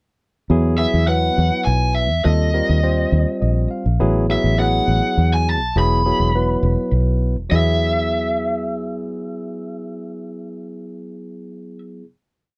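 A straight 6/8 pulse counted in dotted quarters carries this short, soaring jazz piece. The fingered electric bass sits up front with a round, foam-muted tone, playing a syncopated riff low in its register that gives the groove a dark, direct and amped weight. Over it, a barky tine electric piano, lightly overdriven through a combo amp, punches out syncopated quartal chord stabs through Eadd9, D#add9 and Asus2, with a brief fill at 3.1 seconds. The lead guitar, picked through a small cranked amp with overdrive and slapback echo, enters at 0.8 seconds with a motif-based melody built from song-like phrases high in its range. After the opening section the band holds a final chord from 7.5 seconds. The close, dry 1970s-style studio sound keeps the whole performance immediate and bright.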